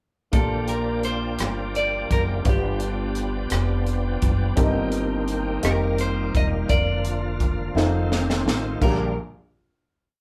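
Slow gospel in 6/8 at 57 BPM in Bb major, this short, complete piece feels jubilant and uplifting despite its unhurried pace. A clean, picked electric guitar carries a motif-based melody of call phrases, while a woody upright piano sits in the background with held drop2 chords decorated by grace notes. A bright tonewheel organ shouts out sustained pad chords through a slow rotary speaker with chorus vibrato, and a pizzicato upright bass with steel strings sits up front, playing a slow gospel line with chromatic approach notes. The crisp fusion drum kit, saturated and gritty with a high-tuned snare, punchy kick and pumping small-room sound, drives a slow six-eight groove and plays a fill from 7.8 to 8.8 seconds. The verse moves from Bb6 through G7, Cm7/G, F9sus4, Bb/F and F7 before landing on a final Bb6 chord at 8.8 seconds, the whole band captured live in one room with moderate studio reverb.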